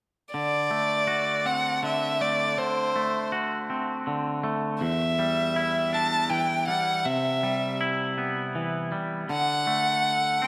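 A single bowed violin leads this cathartic, cinematic rock passage, its clear, focused tone sitting close and up front as it carries the melody between C5 and A5 with vibrato and a slapback echo. Alongside it, a clean, fingered electric guitar, also up front, plays twangy arpeggios spanning E2 to F#4, its warm sound coloured by spring reverb and its own slapback echo. Both parts sound together from 0.3 s until the fragment, cut from a longer piece, ends at 10.5 s. The music moves in 3/4 with a straight feel through D7, Em7, Cmaj7 and finally D. A huge ambient reverb with a 4.1-second decay surrounds the pair, lending the moment a vast, open-air sense of release.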